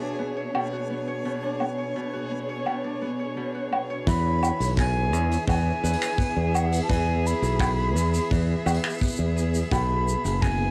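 A light reverb and cassette-tape haze give this home-recorded folktronica excerpt an autumnal, wistful air, moving at 85 BPM in a straight 4/4. A woody, close string quartet with one player per line holds bowed, vibrato-tinged chords while a ringing, fingerpicked Celtic harp spins arpeggios through analog delay, both settled on a B minor add-nine colour. A reversed, granular texture, dreamy and slightly detuned, swells in the upper register over the opening 4.1 seconds, and a distant, roomy brush kit with a rolled-off top ticks along with finger snaps, hi-hat, shaker and woodblock. At 4.1 seconds the texture gives way as a breathy jazz flute takes the melody, its soft attack, unsteady vibrato and lifted highs roughened by 12-bit sampler grit and tape. At that same point a growly, up-front fingered electric bass and a tight, small-room kick drum arrive, deepening the low end before the harmony settles onto a bare B fifth near the close.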